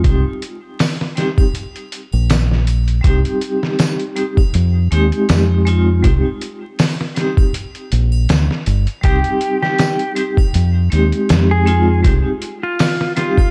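A dark, cinematic trip hop excerpt opens on metallic, ringing hard-mallet vibraphone shimmering with tremolo and tape echo in a boxy small room, a round, tube-saturated dub bass up front and a gritty, pitched-down sampler drum kit with a thumpy kick, while tambourine and triangle sit faintly in the background from 0.8 seconds, and at 9.0 seconds a clean lap steel guitar enters with slide and volume swells, roughened by sampler grit and tape echo, in a dry, dark mix dusted with vinyl crackle.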